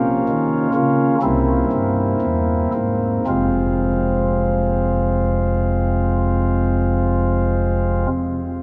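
A soft pipe organ on flute stops, up front with a distinct chiff and baroque voicing, plays alone through this solemn, dark classical chorale in F minor at a rubato 55-67 BPM, slowing over its first 3.3 seconds as it moves from B-flat minor through C7 to settle on F minor, all set in a long, wet cathedral reverb with a dusky production in a brief passage cut from a longer piece.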